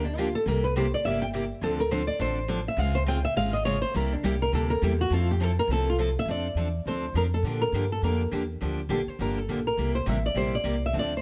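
A fingerpicked flamenco guitar, bathed in plate reverb, takes an up-front solo over the first 6.3 seconds of this charming, swinging jazz manouche excerpt in F major at a brisk 206 BPM, while a bright, freshly strung steel-string acoustic guitar picks the accompaniment with audible finger squeak and a woody, thumpy upright bass on gut strings plays pizzicato beneath, all in a moderate studio room as the chords move from C7 through Dbmaj7 to a closing C7.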